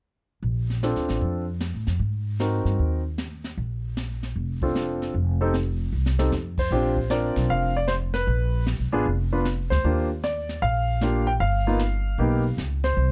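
Sophisticated and warm, this jazz piano trio swings at 153 BPM in Bb major, with a clear, polished grand piano carrying the melody from 0.8 seconds over a woody, growly pizzicato upright bass and a brushed kit with dark cymbals, a high-tuned snare and a boomy kick. A drum fill at 5.9 seconds leads into a new section at 6.7 seconds, where the harmony moves through Ebmaj9 to G7alt. The close, detailed sound has little reverb, keeping the piano and bass up front in this cut from a longer piece.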